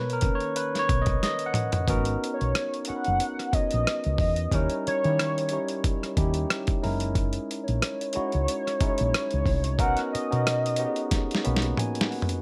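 A barky, clean tine electric piano opens this sultry, soulful neo-soul R&B excerpt in G# minor at 91 BPM with a swung 16th feel, its short solo passage colored by subtle chorus and plate reverb. The electric piano is backed by a round, punchy, woody fretless bass and a gritty, overdriven sampler-style drum kit with a thumpy kick, rim clicks, toms and a medium-tuned snare. At 2.3 seconds a velvety, detuned sawtooth synth lead enters with vibrato, chorus and plate reverb, sustaining its notes over lush chords from Bmaj7 through D#7b9 and F#13 before drum and electric piano fills close the passage from 11.1 seconds.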